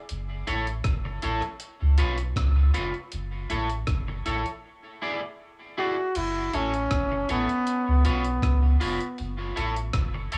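Dub reggae at 79 BPM in F# minor, meditative and spacious, where a deep, round sub bass with transformer saturation and a gritty, compressed sampler-style breakbeat kit with a thumpy kick and cassette-tape grit start at 0.1 seconds, a twangy, slightly broken-up electric guitar with lush chorus and tape echo joins at 0.5 seconds over F#m7 and C#7 chords, and a bright trombone with light vibrato and tape echo steps up front for a short solo at 5.8 seconds, all in a dry, small-room home cassette recording cut from a longer piece.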